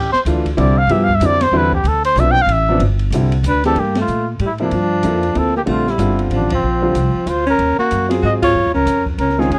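Intense yet cool, this modal jazz excerpt swings in 3/4 as a veiled, cup-muted trumpet leads up front over a growly, woody pizzicato upright bass, a dark acoustic drum kit with a boomy kick and high-tuned snare, and a clear grand piano with audible action noise, before a warm alto saxophone with vibrato joins on a second line partway through and the band hits accents at 3.9, 6.5 and 8.4 seconds, in a dry, close 1970s-style studio sound with small room reverb.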